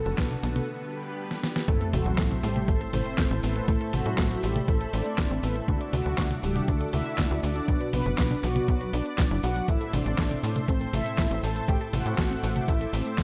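A lush, thick unison pad with chorus and a mellow, round synth brass melody colored by cassette tape and tape echo open this bittersweet, danceable italo disco excerpt at 120 BPM in A dorian, over a tight, punchy sawtooth sequencer bass that sits up front. A warbling, lo-fi pluck joins with detuned arpeggios in the background, while a clean 12-bit drum machine brings a fat snare, handclaps, hi-hat, cabasa and toms, anchored by a thumpy, tape-softened electronic kick. After a short break and a drum fill, an impact and a background sub drop land at 1.7 seconds, where a second, darker synth brass enters with ring-modulated stabs treated with chorus and phaser. The chords move from Bm7 and G through Am, Dadd9 and Bm, giving the driving groove a wistful color. Light reverb and a dark production wrap the whole in a nostalgic, late-night glow.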